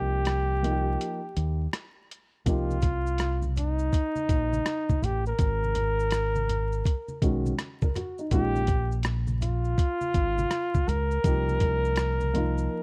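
A breathy flugelhorn with light vibrato and softly scooped notes carries the melody up front in this mellow, nocturnal jazz-hop excerpt, over a round, dark fingered dub bass, compressed lo-fi sampler-style drums with a muffled, thumpy kick, hi-hat and rim click, and a boxy grand piano that drops out at 2.8 seconds and returns at 7.2, while soft-handed maracas and congas join in the background at 2.5 seconds, the whole set in a dry, close 1970s-style studio sound with vinyl crackle.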